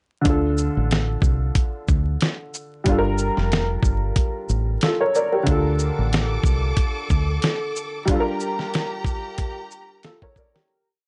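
A swung boom-bap hip-hop groove at 92 BPM in 4/4 opens the piece, with a dusty, sampler-style drum kit laying down a sparse beat of quarter-note hats, a thumpy kick, a fat snare and a shaker, compressed and gritty up front, closing with a drum fill from 9.4 seconds. The mood is dark and reflective, sitting in D minor and moving between Dm and Gm7 chords, with the whole short piece tuned slightly flat of standard pitch. A woody, slightly detuned upright piano repeats held chords in a spread voicing like a sampled loop, dressed with grace notes and short fills and given a tape-worn, filtered tone. Beneath it, a deep, round fingered electric bass plays a looped dub line with foam-muted punch and tube saturation until 7.4 seconds. At 5.5 seconds a clear, close string section enters with bowed, vibrato-rich sustained chords, filtered and sitting quieter in the mix, before a break and fade-out begin at 8.1 seconds. 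The dry, gritty hardware sound carries vinyl crackle and a dulled top end.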